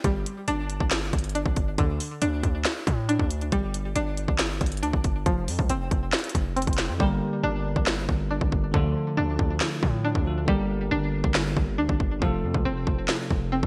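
Menacing and eerie, this half-time trap cut at 138 BPM in G minor sets a twangy, warbling string-like resonator pluck, thick with chorus, phaser and delay, over a heavy distorted 808-style bass and an overdriven, up-front trap kit with hard-clipped kick, sharp snare, handclaps and 12-bit sampler grit under gated reverb, until at 7.0 seconds the hi-hats drop out and a bell-like tine electric piano joins with lush chorus, all framed in bright 1980s-style digital production.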